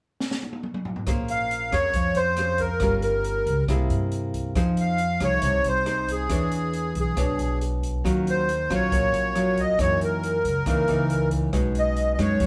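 Bossa nova in Bb minor at 138 BPM, this intimate, smooth excerpt opens with a short drum fill on an open jazz kit, with its high-tuned snare, boomy kick, rim click, hi-hat and toms, before the band settles in at 1.1 seconds. There the fingerpicked nylon-string guitar enters up front with a full-bodied, classical tone, laying down rich chords such as Bbm9, Gm7b5, C7b13 and Ebm9. The pizzicato upright bass joins at the same moment, its steel strings giving a woody low line beneath the harmony. At 1.3 seconds the reedy accordion takes the melody, sweet and close with a light tremolo tuning and a boxy small-room character, sitting highest in the blend. The players sound like a live band sharing one room, framed by a moderate large studio reverb that keeps the sound intimate and cohesive.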